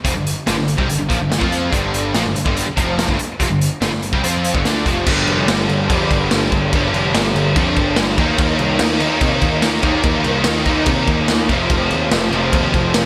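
Hard rock in G minor at 145 BPM in a straight 4/4, this aggressive, menacing excerpt drives a bright, double-tracked cranked stack guitar riff with overdrive and analog chorus over a fuzzy, overdriven picked electric bass, both playing throughout its 13 seconds. An up-front garage drum kit with punchy kick, dark cymbals and a gritty, saturated, rolled-off sound pumps through gated reverb. The harmony moves from G5 to Eb5 at 8.2 seconds and F5 at 11.5 seconds, all inside a lush hall and a bright 1980s-style digital production.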